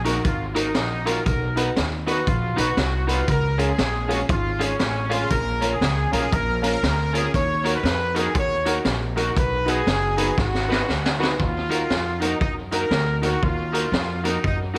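A roomy, gritty sound with moderate echo chamber reverb frames this driving, energetic ska cut in Eb minor at 118 BPM with a swung feel, where a clear, loose horn section carries the melody up front over slightly detuned upright piano stabs, a woody pizzicato upright bass, a twangy background guitar at the edge of break-up with spring reverb, and a saturated garage drum kit with a high-tuned snare, boomy kick and tape echo, whose fill at 10.4 seconds leads into a new section at 11.4 seconds.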